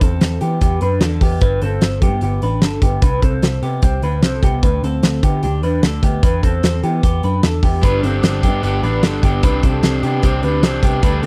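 Bright and breezy, this jangly indie pop excerpt moves in a straight 4/4, with a twangy, slightly broken-up electric guitar through a small old amp picking arpeggios colored by phaser and slapback echo, over a dark, foam-muted vintage bass and an up-front rock kit with a fat snare, punchy kick and rolled-off top. The chords move through Em7, G, Csus2 and Dsus4 before returning to Em7, and at 7.8 seconds a compressed, overdriven electric guitar joins in with spring reverb as accompaniment, thickening the final G and Cadd9. The sound is dry and close, like a 1970s-style studio session in a small room.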